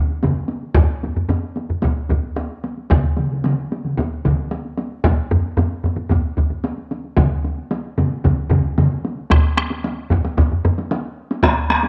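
A straight 4/4 pulse drives this short, powerful cut from a longer Japanese traditional taiko drum ensemble piece, carrying a ceremonial weight throughout. Four taiko parts build the sound, entering within the first second: one struck with hard sticks has a vintage, band-limited color and sits further back in the mix, while another played with heavy sticks is close, dry and up front. A third heavy-stick part is also up front yet sounds distant, as if heard in a large room, and a fourth, with hard sticks, carries a small-room character and sits forward as well. Light reverb and a small room ambience frame the ensemble. The opening section runs to 9.3 seconds before a brief closing passage, with one part dropping out at 10.8 seconds and the last drum sounding until 11.9 seconds.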